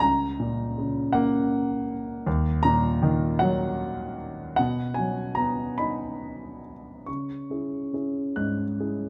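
Moving in a lilting 6/8 with free rubato, this brief fragment of a lyrical classical solo piano piece drifts along at roughly 46-54 BPM, counted in dotted quarters. The mood is wistful and reflective, set in C# dorian with the tuning at A4 = 441 Hz. A grand piano carries everything alone across the full 9.1 seconds, reaching from C#2 up to F#6, its tone smooth and vintage with a short sustain that keeps each chord clear. The harmony passes from F#/C# through D#m and B before a new section opens at 7.1 s on C#m, lending a gentle sense of turning inward. Close, detailed microphones place the instrument up front, while a light reverb adds just a touch of air around its warm sound.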